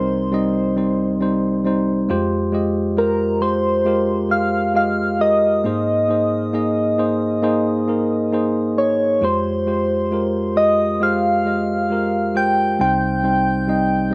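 Emotional and melancholic, this pop ballad in F minor moves at a slow 67 BPM in a straight 4/4 feel, and this short passage is cut from a longer piece. A tine electric piano carries the accompaniment from start to finish, its clean, direct tone sitting up front and spanning a deep low register up to the middle of the keyboard. Above it, a soft struck synth lead sings the melody between Bb4 and G5, with a round, gentle, keys-like FM character, a fast attack and a decaying tail. Chorus and dub echo colour the lead, giving the echo-heavy mix much of its atmosphere. The harmony drifts from Cm through Fmadd9 and Abadd9 before returning to Fmadd9 and settling on Cm at 12.8 seconds, all bathed in a moderate spring reverb.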